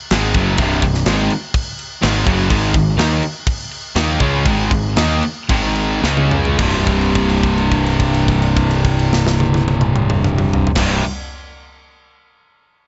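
A straight 4/4 heavy metal groove in C phrygian moves between 106 and 126 BPM, slowing from 2.5 to 6.6 seconds, where a drum fill leads into a long held note that rings until 10.8 seconds, giving this short, relentless, aggressive cut its weight. Two bright, double-tracked overdriven guitars carry the riff from C2 to Eb4, one distorted and up front and the other crunchy and set in the background, while a growly fuzz bass drives underneath and a tight acoustic kit of kick, snare, toms and crash sounds gritty and saturated with a rolled-off top. The chords travel from Cm through Ab5 and Db5 to a final C5, all heard in a small room ambience with a dark sound.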